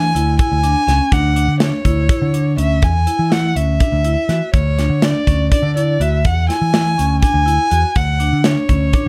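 Driving and bright, this progressive instrumental cut from a longer piece moves in an uneven 7/8 with a straight feel. An expressive bowed violin carries the melody up front, its warm tone shaped by vibrato and portamento. A picked electric bass, amped and bright, sits equally forward beneath it, while a vibraphone struck with medium hard mallets and its motor off spins ringing, metallic arpeggios in the middle register. A modern acoustic drum kit in a small room drives the pulse with tight kick, a medium-tuned snare and hi-hat. The harmony moves from E7 to Dmaj7 before a new section at 2.8 seconds drops the chords away, and light reverb gives the band a touch of space.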